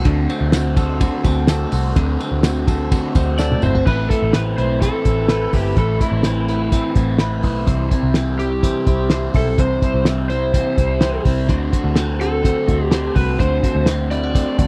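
A cloth-damped drum kit sits up front with a thuddy, muffled sound: a fat snare, a tight kick and dark cymbals, all gritty and rolled off at the top, in a small room. This is a restless, wistful stretch of jangly indie pop in straight 4/4, cut from a longer piece. A vintage foam-muted picked bass stays low and round beneath it. A crunchy overdriven guitar with phaser plays accompaniment while a bright, compressed clean guitar picks arpeggios through subtle chorus and tape echo. A faint, band-limited tambourine jingles in the background until 3.7 seconds. At 3.4 seconds a drum fill begins as a dark lead guitar, driven through a small cranked amp, enters to carry the melody over chords moving from D7 through Amadd9 and C back to D7. The dry, close recording has the feel of a 1970s studio.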